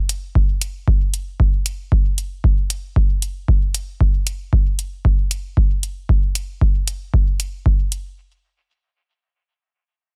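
A steady four-beat pulse with a light swing on the sixteenths drives this short dub techno fragment, carrying a hazy, deep mood. The electronic hi-hat comes in first at 0.1 seconds, a layered, overdriven sound with a gritty edge that sits up front and carries the feel of a small room. The electronic kick drum joins at 0.4 seconds, an analog, deep thump with a tape-saturated roundness that is also placed up front and sits louder than the hat. Together the two drum parts fill the whole passage, with the kick stopping at 7.8 seconds just before the hat. The sound is dry and close, and the master is dense and heavily limited in a modern style.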